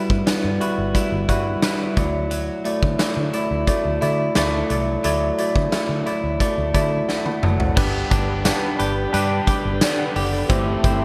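1980s-style pop at 88 BPM in G major, glossy and nostalgic, this excerpt opens with a worn, slightly out-of-tune tine electric piano up front with subtle chorus. Beside it are a bright, compressed, direct-recorded clean guitar riff with chorus and digital delay, a dark, round, foam-muted fingered bass, and a huge arena drum kit with a punchy kick and gated reverb. The electric piano and drums play fills just before 7.8 seconds, when a double-tracked overdriven guitar and a smooth, detuned sawtooth analog pad enter in the background under a bright digital plate-reverb sheen.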